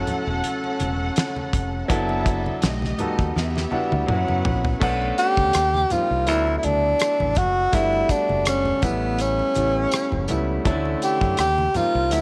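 Lush 1970s-style soul in B minor at 82 BPM with a gentle 16th-note swing, silky and bittersweet, cut from a longer piece. A dark, sul tasto string section with light vibrato shades the opening over warm concert grand piano, punchy bright fingered electric bass, a damped 70s drum kit with a fat snare and dark cymbals, and very quiet low-tuned congas, until a drum fill at 3.4 seconds leads into the second section. From 4.8 seconds a jingly tambourine sits in the background, and at 5.2 seconds a breathy, whispered tenor saxophone takes the melody up front, all in a small room with light reverb over rich chords such as Bm7, Gmaj7 and Dmaj7.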